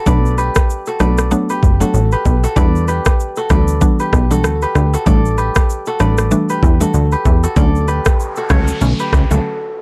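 Hypnotic and smooth, this afrobeats excerpt moves at 96 BPM in B minor with a lightly swung sixteenth-note feel, cycling through Bm7, Em7, A7sus4 and Dmaj7. A crisp, ringing fingerpicked kora riff with delay floats over a woody, round FM synth pluck with chorus, while a punchy, funky sawtooth bass with a filter pluck and an overdriven electronic drum kit with a knocking kick, rim click and shaker sit up front. The dark, dry production adds an electronic noise sweep at 8.2 seconds before a brief break at 9.4 seconds, where the kora rings on beside the sweep.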